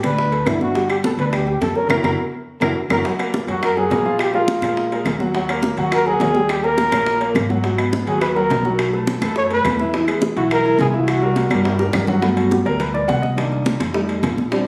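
A lively, sunny Afro-Cuban jazz excerpt opens with a dark, breathy trumpet carrying the melody up front, close-miked and intimate with vibrato. Beneath it sit a natural-sounding grand piano, a thumpy pizzicato upright bass with steel strings, bright high-tuned congas, woody background claves and ringing metal-shell timbales, with round, low-tuned bongos joining at 0.2 seconds. Following an early band accent, the trumpet stops at 11.9 seconds in the middle of a drum fill, and the piano takes a solo from 12.2 seconds over bass and drums in a moderate studio reverb.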